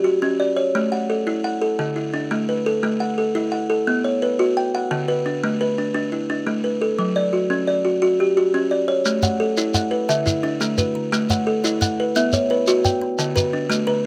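Buzzing kalimba opens alone, spinning arpeggios in a hypnotic, rippling cycle in the Southern African traditional style, its woody, hollow-box tone ringing and up front with a vintage, band-limited character. The music sits in A mixolydian at 116 BPM in dotted quarters, a straight 12/8 built around interlocking figures that circle chords such as A, D and Bm. At 9.1 seconds a grainy, mellow shekere joins close and dry, adding acoustic percussion to the cycle. A second kalimba follows at 9.2 seconds, bright and short with a thumbnail pluck, set in the background and carrying a slapback echo. The sound is dry and outdoor with little reverb, and the clip ends at 14.1 seconds as a piece cut from a longer performance.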